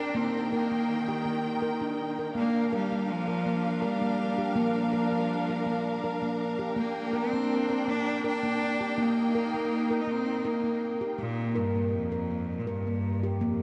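A ringing, mellow handpan plays soft arpeggios through analog delay in this dreamy, calm piece of meditative world music at 82 BPM in 3/4 and Bb major, while a bright, biting solo cello carries an intense, vibrato-rich melody through its own delay and a lush, smooth string section holds sustained chords until 11.2 s, all bathed in a huge ambient reverb with a hazy cassette-tape character.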